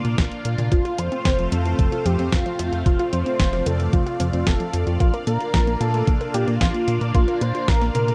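Danceable and romantic, this brief italo disco clip opens on a lush, bright unison pad, a glossy, dark chorused synth bass with tube saturation, and a clean 12-bit drum machine with a fat snare, hi-hat and toms, joined by a thumpy electronic kick that enters at 0.2 seconds. At 0.7 seconds a bold, nasal unison lead with vibrato, sampler grit and tape echo takes the melody, while a warbling, punchy unison pluck plays arpeggios with tape echo in the background. The chords move from Bb to F and back to Bb, and the sound is dry and close, like a 1970s studio recording.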